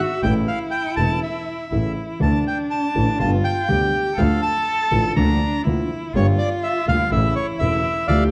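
A reedy, up-front bandoneon melody and a rich bowed cello second line, sung with vibrato and portamento, open this dramatic, passionate rubato tango fragment at 122 BPM, joined at 0.2 seconds by a woody, boxy upright piano with audible action noise and an earthy, distant bowed double bass moving from A through Dsus2, Dm and Gm back to A in a dark production with a large studio reverb, before the band lands an accent at 8.1 seconds.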